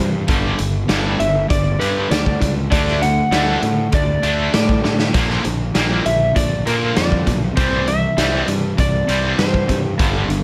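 Sunny and swaggering, this short classic rock cut struts along at 99 BPM in a straight 4/4, moving from a G5 power chord through D, Bb and C. A slightly broken-up slide guitar carries the melody with slapback echo, while two bright, overdriven picked rhythm guitars, one of them a cranked stack with harmonic tremolo, play the riff in the background over a growly, fuzzed fingered bass. The gritty, up-front garage drum kit comes in at 0.3 seconds with a punchy kick and a rolled-off top, plays a fill at 4.8 seconds, and the whole group sits in a moderate studio reverb.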